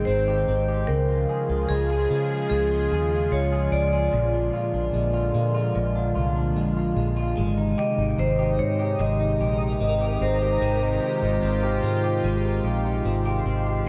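Dream pop at 74 BPM in Ab major, blissful and ethereal, this passage cut from a longer piece sets a ringing, metallic vibraphone melody with digital delay over a swirling, detuned sawtooth pad treated with phaser and chorus, while a slightly broken-up electric guitar picks compressed arpeggios through lush chorus and delay. A round, foam-muted electric bass sits up front with a dark, punchy tone beneath chords moving from Abmaj7 through Db and Bb7 back to Abmaj7. At 8.5 seconds a faint, twinkling granular texture with octave-up shimmer joins, and a huge ambient reverb with a 4.1-second tail bathes the whole mix, with the vibraphone stopping at 12.6 seconds.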